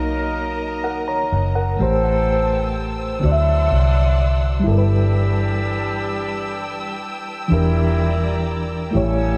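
Slow six-eight R&B with a yearning, sultry mood, heard as a short cut from a longer piece over chords like Bmaj9, D9 and Em7b5. A reedy electric piano with fast tremolo and dub echo carries the accompaniment, joined by a lush, bowed string section holding sustained chords with vibrato and portamento, and a distant, roomy horn section playing stabs in octave doubling, also treated with dub echo. A round, foam-muted electric bass sits up front and punchy beneath it all, while the echo-heavy mix carries light studio reverb and the electric piano slips in a brief fill at 8.9 seconds.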